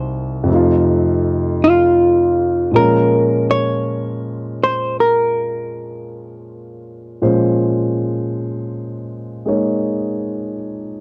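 Lightly reverberant and softly worn by cassette tape, this home-recorded fragment of a longer jazz ballad sets a wistful, smoky mood at a slow 53 BPM in 4/4 with a gentle swing, in Bb minor. A clean, compressed hollow-body electric guitar carries the melody up front in a fingered, shadowy tone until 10.6 seconds. A mellow concert grand with deep bass and audible action noise accompanies intimately through F7 and Bbm9 chords to 11.0 seconds.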